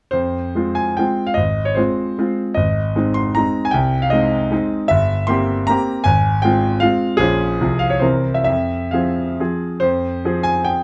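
A clear grand piano opens alone at 0.1 seconds with a romantic classical dance in triple time, its dotted rhythms carrying a nostalgic yet capricious mood. The playing is rubato, letting the pulse stretch and give as the phrase unfolds across a range from deep bass notes to bright upper tones. The instrument sounds smooth and slightly vintage, with a short sustain and an up-front presence, set in a light reverb. The harmony moves from a minor home chord toward its relative major, then turns through a dominant seventh and a brief minor seventh before settling back home at 8.5 seconds. A short return of the opening idea begins at 9.8 seconds, and the piano plays on until 10.8 seconds, where this fragment of a longer piece breaks off.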